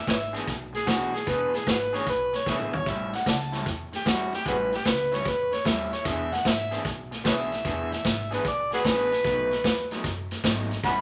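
Laid-back and gritty, this electric blues shuffle rolls along at 150 BPM in 4/4 with a swung eighth-note feel, centered on E mixolydian and cut from a longer piece. An overdriven, amplified harmonica takes the lead from the very start, playing an up-front, jazz-styled solo full of light vibrato, scooped notes and tongue slaps. Beneath it, an electric guitar through a small old amp plays a bright, twangy, slightly broken-up picked riff, while a woody pizzicato upright bass with steel strings anchors the low end. A vintage drum kit sits up front with a punchy kick, a medium-tuned snare and a rolled-off top, adding a short fill at 2.5 seconds just before the move from E7 to A7. The chords return to E7 and reach B7 at 9.2 seconds, all set in a moderate large-studio reverb.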